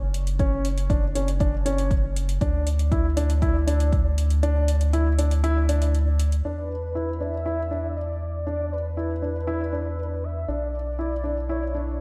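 A straight 4/4 pulse at 119 BPM opens this hypnotic, melancholic piece of piano and strings electronica, cut from a longer track, with a deep, overdriven electronic kick and metallic, overdriven hi-hats that sound re-recorded in a large room. The kick falls away at 4.0 seconds and the hats at 6.4 seconds, leaving the round analog bass to carry the low end from start to finish. Sine-like and up front, the bass sits between F#1 and E2 with a fast attack, long sustain and sidechain pumping. A dark upright piano repeats a mellow, woody riff in a narrow middle range, its action noise audible and intimate, trailing a diffuse ambient delay. At 6.5 seconds a velvety, detuned synth lead enters with the melody, smooth with chorus and vibrato, set in the same delay over a harmony that moves from F#5 through Dsus2 to E5 and Bm. Light reverb gives the whole piece a digital ambience.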